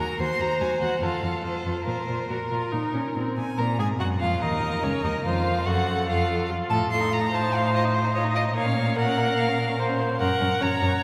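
A quick, dramatic classical-period movement for string quartet, cut from a longer piece, with a stormy mood carried through two statements of the same opening section. A bright, focused first violin sings the melody with vibrato from a distance, over a rich, smooth second violin line and an intense, clear viola accompaniment, while an even, up-front cello anchors the bass. The four bowed players sit in a wet church reverb, and the harmony turns through E-flat minor, F and B-flat minor, closing on G-flat.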